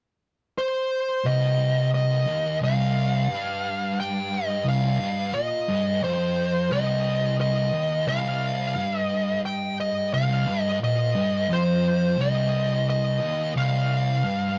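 A compressed fuzz lead guitar carries the melody from 0.6 seconds, its distorted, picked line sitting up front with a digital delay trailing it. At 1.2 seconds a double-tracked, thick fuzz guitar joins with a low, distorted riff on C minor, giving this 88 BPM metal passage in a straight 4/4 a hypnotic, brooding weight. The rough rehearsal-room sound carries tube saturation and a moderate stone room reverb, and the clip is cut from a longer piece.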